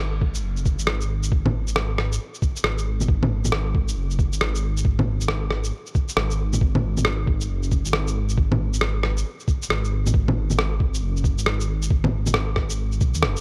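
Future garage at 136 BPM with a 16th-note swing, this rainy, ghostly excerpt is cut from a longer piece and stays bare and dry throughout. A deep, rumbling detuned saw bass with a dark, beating sawtooth-and-sine tone and a fast attack sustains in the low register under sidechain pumping, while a thumpy, muffled electronic kick enters at 0.2 seconds. Compressed shaker, rim click and bongos join at 0.3 seconds, sampler-style and tape-warm, with the kick and percussion carrying the air of a large room while sitting up front.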